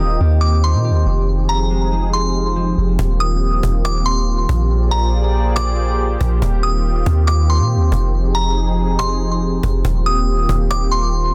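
Floating and dreamy, this atmospheric cloud-rap excerpt in Eb major moves at a half-time 140 BPM, with a glassy FM synth bell warbling through a chorused, tremolo-tinged melody over a smooth detuned sawtooth pad, ringing fingerpicked harp arpeggios that stop at 4.7 seconds, a round, deep 808-style bass sitting up front, and a woody, close and dry cajon entering at 3.0 seconds, all in a small room with a dense, heavily limited master and a filter sweep across the opening.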